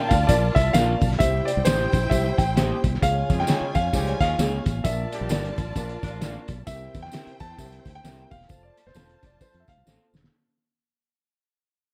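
Joyful and danceable, this upbeat 1960s-style soul cut swings at 132 BPM in F major. An up-front, polished grand piano carries the melody over lush bowed strings, a reedy electric piano with fast tremolo, and a warm, direct-and-amped fretless bass. Muffled, gritty, cloth-damped drums drive it along with faint high-tuned congas and a jingly tambourine, while a twangy, slightly broken-up guitar adds chorus-soaked stabs in the background and a dark, distant horn section joins from 3.3 to 6.5 seconds, all under light reverb and a steady fade that ends on a drum fill at 9.9 seconds.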